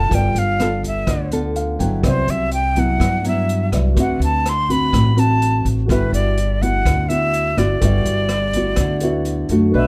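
Romantic and sunny, this bossa nova fragment sets a breathy, up-front jazz flute singing a vibrato-laden melody in plate reverb over thumb-plucked nylon-string guitar, woody pizzicato upright bass, a distant, roomy drum kit with punchy kick, hi-hat and rim click, and an intimate baby grand piano in the background that adds a brief fill at 1.3 seconds, before an airy small flute group slips in with a tongued second line at 9.7 seconds, all within a dark, lightly reverberant production.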